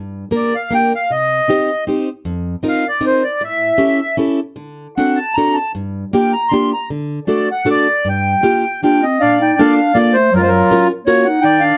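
A reedy accordion with a slow beating shimmer carries the melody up front in this whirling, bittersweet musette waltz in G minor, cut from a longer piece and moving at 156 BPM in 3/4 with a loose, rubato feel. A picked plugged-in steel-string acoustic guitar, close and warm with a touch of finger squeak, lays down the accompaniment from 0.0 s through minor and dominant chords, and a soft-attacked clarinet in a classical style joins at 8.8 s with a low second line as the harmony shifts to Bbmaj7 and Gbmaj7. The dark, warm production sits in a small room with moderate reverb.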